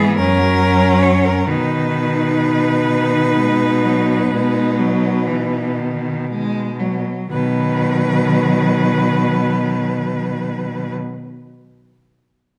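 Serene and lyrical, this classical piece for four bowed cellos sways in 12/8 with rubato and slows through its first 7.3 seconds: an intense, vibrato-laden melody with a smooth top sings over a clear, focused, close second line, an even accompaniment and a bass that sits up front. The melody, accompaniment and bass cellos share a rich tone, and all four are bathed in the lingering reverb of a recital hall within a dark production.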